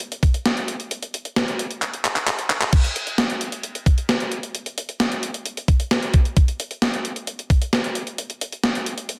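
A straight 4/4 pop pulse comes from an up-front, sampler-style 80s digital drum machine, its thumpy kick, gated-reverb snare, handclaps, hi-hat and crash carrying a cool, nocturnal, tape-tinged mood through a fill from 1.8 to 2.7 seconds into a new section, all set in a moderate plate reverb and a dense, heavily limited modern master in this short clip from a longer piece.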